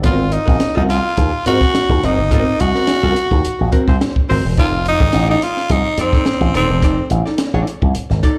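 A straight 4/4 funk groove at 106 BPM drives this gritty, funky fragment, cut from a longer piece and captured live at a gig through the venue's PA with club reverb and a light small-room ambience. A compact cocktail drum kit sets the beat with hi-hat, a punchy kick and a high-tuned snare, its acoustic sound dark and smooth, while a bright slap bass, pushed up front through an envelope filter, carries the low end. A miked, amplified archtop guitar adds clean, picked hollow-body accompaniment with a slapback echo, sitting back in the mix. The raspy tenor saxophone leads up front with scooped notes, light vibrato and its own slapback echo, and a warm, vintage-toned baritone saxophone slips in briefly at 3.9 seconds, holding to a vibrato-tinged C4 as a second line. The band hits an accent from 2.3 seconds, and the harmony moves from Ab9 to F13 at 4.6 seconds.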